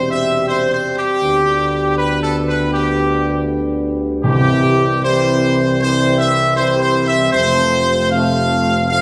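Set in a church or concert hall with a lush, reverberant recital-hall ambience, this regal, majestic classical fanfare opens with a clear trumpet section carrying the melody up front, its light vibrato ringing over mellow French horns and trombones that hold sustained chords in the background, while a solo tuba, smooth on top, anchors the bass. Soft-mallet timpani sound with a round tone from 4.2 to 5.4 seconds, and the passage, cut from a longer piece, plays through stately harmony in 4/4 for its full 9 seconds.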